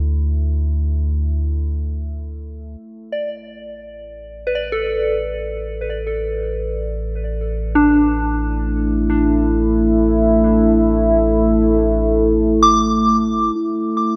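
A slow, straight 3/4 pulse at 67 BPM carries this melancholic, spacious ambient passage, cut from a longer piece, as a round sine sub bass and a warbling, vintage sawtooth-and-pulse-wave drone with chorus sit over a D5 chord before moving to Asus2. At 3.1 seconds a pure, gentle FM synth bell enters with arpeggios, fading in alongside the sub bass and treated with chorus, phaser and analog delay. The evolving drone drops out and returns at 8.5 seconds, and the dreamy mix, soaked in lush hall reverb, settles on A5.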